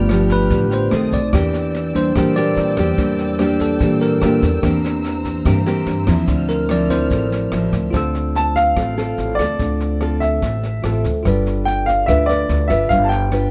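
A bell-like tine electric piano opens this smooth, intimate bossa nova passage with a solo, set over fingerpicked, full-bodied nylon-string guitar, a pizzicato upright bass with a woody, thumpy gut-string tone sitting up front, and a soft-attack string section whose dark, bowed chords carry light vibrato. Brushes on a studio jazz kit bring a boomy kick, rim clicks and a medium-tuned snare, while a grainy tube shaker sits far back in a live room. The harmony moves through colourful seventh chords, from G7 and a tense B7b9 into Em7b5, C7/E and a lush Dm9. The strings fall away at 7.9 seconds, and at 8.4 seconds a clear baby grand piano takes the melody up front, its natural tone carrying audible action noise. Light reverb gives the ensemble a gentle sense of space across this short cut from a longer piece.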